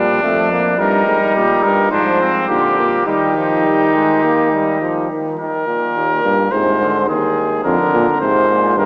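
Heard through a small speaker and bathed in a long, wet cathedral reverb, this lively, elegant imitative brass canzona in Eb major moves at 106 BPM in a straight 4/4, with a warm, up-front trumpet carrying the melody from 0.8 s over a bright, distant second trumpet that stops at 5.1 s, a roomy trombone with light vibrato supplying the accompaniment, and a mellow, smooth-topped euphonium anchoring the bass, all in a short passage cut from a longer piece.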